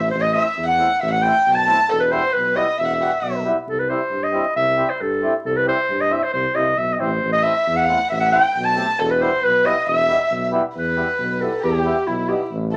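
A smooth-topped clarinet opens this bittersweet, soulful klezmer excerpt up front, alongside a dark, airy violin played sul tasto with vibrato and a mellow tuba bass, while a reedy, full accordion joins almost at once. The intimate violin falls away at 3.4 seconds and returns at 7.3 seconds, as the harmony moves between Am and Em in a straight 2/4 feel. From 10.7 seconds the clarinet takes a solo, and the whole excerpt sits in a wet club reverb with a layer of vinyl crackle.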